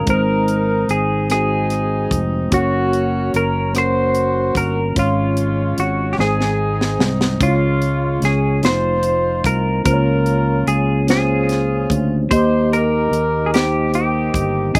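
A mellow horn section, a clean semi-hollow electric guitar, a tine electric piano and a fingered electric bass all sound together from the opening moment of this slow, uplifting gospel excerpt. A tight funk drum kit joins at 0.1 seconds, pacing the music at 49 beats per minute in a straight 6/8. The horns carry the melody with a punchy, pop-style ensemble sound and light vibrato, and the guitar shares the melody line in a fingered, compressed, hollow-body tone. Underneath, the electric piano's mellow, warm accompaniment and the dark, round bass move through hopeful changes from Ab to Gb, Db/Ab, F7, Bbm/Db and Eb. The drums sit up front with a high-tuned snare, rim clicks, hi-hat and a tight kick, adding a fill between 6.2 and 7.4 seconds. The overall sound is dry, recorded outdoors with little reverb.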